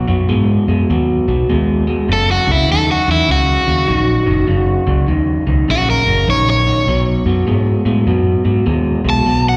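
Heard through the venue's PA at a live gig, this short excerpt carries a light recital-hall reverb. It is a gritty, soulful electric blues shuffle at 100 BPM in 4/4, swung on the eighths and set in F# mixolydian. The harmony moves from B to F# at 2.1 seconds and onto B5 at 6.9 seconds. A crunchy, bright, overdriven guitar plays the melody as a solo throughout, picked and up front with slapback echo. Beneath it, a second electric guitar through a small old amp plays the riff, its tone slightly broken-up and compressed, also with slapback echo. A vintage fingered electric bass, foam-muted, dark and round, holds the low end from 0.1 seconds.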